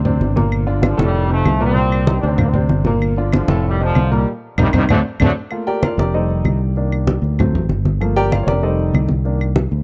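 Fiery, danceable salsa at 192 BPM in G minor, this fragment of a longer piece rides on round, dark fingered electric bass up front, low-tuned congas with a thick-skinned, soft-handed tone, and woody claves. A bright trombone section with light vibrato and a vintage, punchy ensemble sound carries the melody from 0.9 s until 5.3 s, over a present concert grand piano with deep bass and short sustain comping through minor-seventh and extended chords. After a band accent, the piano takes a solo from 5.5 s, all captured as a dry, close 1970s-style studio recording with small room ambience.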